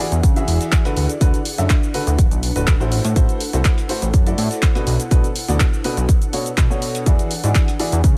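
A clear, woody upright piano opens this joyful, uplifting piano house excerpt at 123 BPM in E mixolydian, its slightly detuned, boxy riff ringing with long sustain, a touch of delay and sidechain pumping, while an ethereal, airy pad sits in the background with ensemble chorus, phaser and built-in reverb. Almost at once a fat, nasal analog bass arrives up front, saturated and detuned with a fast filter pluck, pumping under the sidechain. A punchy, layered electronic kick drives the straight 4/4 from the front of the mix, joined by an overdriven analog drum machine playing cabasa, handclaps and hi-hat. Beneath them a very quiet, gritty sampler-style kit adds tape-warm hi-hat, shaker and a medium-tuned snare. The chords move from E9 through D6, Am6 and Bm7 before returning to E9 at 7.1 seconds, all set in a digital ambience.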